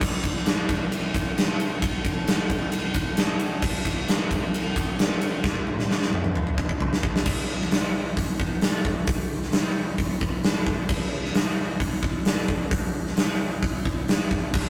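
Aggressive and menacing, this rock passage drives forward at 132 BPM in a straight 4/4, carried entirely by a huge arena drum kit that plays from 0.0 to 14.6 seconds. The acoustic kit sits up front with a punchy kick, a medium-tuned snare and bright cymbals, working across crash, hi-hat, ride and toms. A drum fill from 5.5 to 7.3 seconds bridges the opening section into a second one that begins at 7.3 seconds. The drums have a hall quality, and the whole take carries light reverb, the grit of tube saturation and the rough character of a rehearsal-room recording. Cut from a longer piece, the clip keeps its rough, menacing edge.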